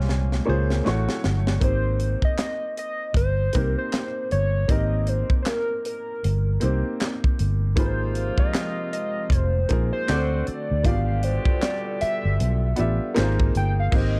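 A hollow, wave-folded square lead with chorus, vibrato and tape echo carries a synth solo from 1.6 seconds in this smooth, warm neo-soul R&B groove at 78 BPM with a 16th-note swing. A woody upright piano with short sustain and a round, foam-muted electric bass play throughout, while a tight funk kit with a high-tuned snare, hi-hat and handclaps opens with a fill. A soft, flute-like detuned pad and a distant, roomy horn section with tape echo sound briefly at the start and return at 7.8 seconds, all in a dark, warm production with light reverb, over chords moving from Bbm9 and Cm7 to Ab69, D7 and G7.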